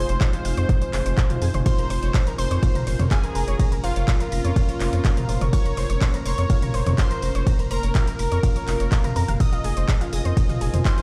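Cinematic and hypnotic, this melodic techno excerpt at 124 BPM rides an overdriven electronic kick up front and a round, deep analog bass over Fm7 and Bbmadd9/F chords, with a punchy analog drum machine adding handclaps, hi-hat, ride cymbal and toms, its hats, cymbals and toms pumping against the kick. A bold, brassy analog synth brass carries the melody with vibrato and tape echo, joined by a crystalline wavetable pluck as a second line, a sawtooth analog pluck spinning arpeggios, a moody dark pad holding sustained chords and a breathy airy pad for texture. A faint electronic swell sounds in the background from 8.6 to 9.4 seconds, and the mix sits fairly dry, as if played through a big sound system in a bare room.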